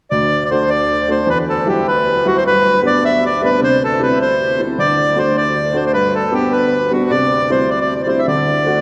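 A Celtic folk jig in D mixolydian, bright and rollicking, moving at 103 BPM (dotted quarters) in 6/8 in this short excerpt from a longer piece. A reedy, close-miked accordion carries the melody up front with a full, dry tone, while a clear upright piano with a woody, polished sound and short sustain supplies the accompaniment, and a breathing, airy harmonium holds a D2 drone in the background. The chords move through D, Emadd9, G and C, and the recording sits in a church or concert hall with a long, wet cathedral reverb of 4.6 seconds.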